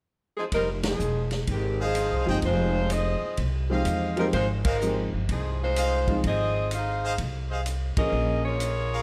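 Big band swing in F minor at 126 BPM, this dramatic, brassy excerpt opens with an up-front saxophone section carrying the melody with light vibrato and a smooth top, joined at 0.5 seconds by a woody, thumpy pizzicato upright bass on gut strings and a vintage kit with dark cymbals and a tight kick, before a brilliant, soft-attacked trumpet section adds stabs from 1.8 seconds and a slightly detuned upright piano accompanies from 2.3 seconds, with band accents punctuating the Fm7 vamp that shifts to Bbm7 near the end, all set in a moderate recital hall reverb.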